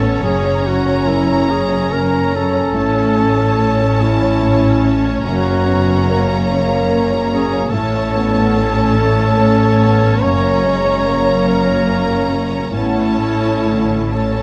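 Close, detailed microphones and a light reverb frame this cinematic, emotional film-score excerpt, with a faint vinyl crackle beneath its moving, hopeful mood as it drifts freely in 6/8 over chords alternating between F# and A. A solo duduk carries the melody with folk-style vibrato, joined high above by a lush, focused symphonic violin section, while a more distant studio violin section adds an expressive second line. Underneath sit a mellow grand piano with audible action noise, an even viola section, a dark, roomy French horn section holding sustained chords, and rich, smooth cellos and double basses anchoring the bass.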